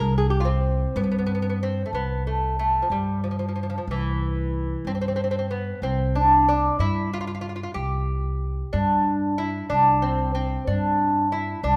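Set in a moderate recital-hall reverb, this short, hypnotic and longing excerpt of a Persian modal ensemble moves at 62 BPM in a straight 6/8, in the C dastgah mahur. A bright, delicate, fingerpicked lute with double nylon strings, some doubled at the octave, carries the melody up front, while a woody, growly pizzicato upright bass on steel strings holds the low end just as close. Both play throughout the 11.8 seconds, with the music shifting into a new section at 1.9 seconds.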